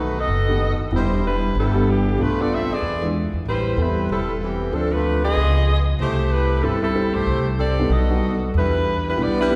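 Brassy and swinging, this short big band jazz fragment at 189 BPM sets a smooth-topped saxophone section singing the melody with vibrato over a woody, pizzicato upright bass, while a dark, mellow grand piano joins as accompaniment at 0.5 s, the band heard from further back in a concert hall with a lush 2.3-second reverb as the harmony moves from B7 through Em7 and Db9 to C6.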